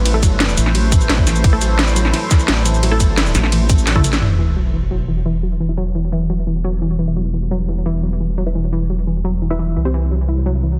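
Futuristic and dark, this excerpt of technical drum and bass runs at 173 BPM in E minor, opening straight into a drop over an Am chord. An overdriven electronic kick hits tight beside a cracking snare, metallic hats, ride, shaker and toms from the up-front kit, while a thick, detuned saw bass with chorus and overdrive holds the low end and a nasal, resonant vowel-sweep wobble bass sits on A1 from 0.6 seconds. Above them, a soft, round pluck spins arpeggios through chorus, digital delay and sidechain pumping, and a muted, evolving dub chord stab adds phaser and delay, while a deep, moody pad sustains chords in the background with its own reverb and pumping. A drum fill and band accent close the first section, and at 4.2 seconds the drums and wobble bass stop as an electronic sub drop lands and the harmony moves to Em. From there the saw bass, pad and pluck carry on while a filter sweep works on the stab, with a shift to C near the end, all under a dense, heavily limited master with light reverb.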